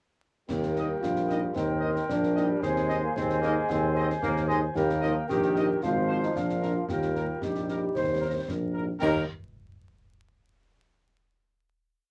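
A short booth ambience and a layer of vinyl crackle give this festive, rousing wind-band march an old-record feel. In 2/4 at 113 BPM in E-flat major, the whole piece begins at 0.5 seconds, with warm, up-front tuba marking the bass on the beats under a smooth top, while the close snare, bass drum and dark-toned clash cymbals drive a marching pattern. At 0.8 seconds the distant trumpet section takes the melody with light vibrato and after-beat chords, joined by a very quiet French horn section on the same off-beat figures. A vintage-toned euphonium carries a second line, the woodwinds play chords in the rhythm of the tune and answer at phrase ends, and a tight trombone section adds a counter-melody and sustained chords. The clear trumpets, euphonium and trombones contrast with the dark woodwinds and horns before the band settles on a final held chord at 9.0 seconds.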